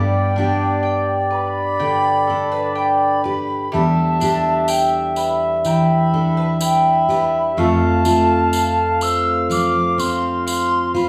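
The recording sounds like a small acoustic folk band playing live together in one room, wrapped in a wet, large studio reverb. At a slow 62 BPM in a straight 4/4, the mood is intimate and reflective, and the harmony moves from G to Em7 and then F in this short cut from a longer piece. A close-miked baroque flute carries the melody with a pure, wooden tone, expressive vibrato and a crisp attack, while a mellow accordion plays a dark, reedy second line with slow beating. Up front, a jumbo steel-string acoustic guitar is fingerpicked with a bright, full-bodied sound and audible finger squeak, and a mandolin adds round, double-strung picked arpeggios. A jingly, dry tambourine enters at 4.2 seconds and plays through to the end at 11.1 seconds.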